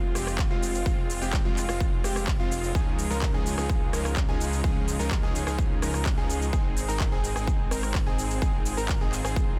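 A dense, heavily limited modern master with little reverb carries this euphoric, emotional slice of festival progressive house, where a crisp, tape-warm big-room kit of handclaps, hi-hat, rim click and shaker enters at 0.2 s, joined at 0.4 s by a punchy, up-front electronic kick. A thick, chorused detuned saw bass, a sawtooth supersaw stab riff with filter sweep and tape echo, and a clear concert grand piano playing arpeggios through vintage 12-bit sampler grit and tape echo all pump with sidechain. Behind them, a smooth studio string section holds sustained, lightly vibrato-touched chords in the background as the harmony moves from Fm to Dbadd9 to Ab.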